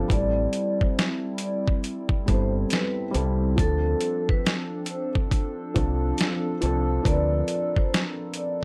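Soaked in light reverb, this brief, melancholic lo-fi hip hop fragment opens with a felt-muted upright piano whose thick felt and audible action noise sit under a cassette-tape haze, while a hollow, flute-like pad with a slow attack and chorus holds sustained chords behind it. A gritty, overdriven sampler-style drum kit with a thumpy kick sits up front beside a round, dark dub bass that drops out at 7.4 s. Above them, a softly malleted vibraphone carries the reflective melody with slow motor vibrato and an airy ring as the harmony moves from Am7 to Dm7 at 3.6 s.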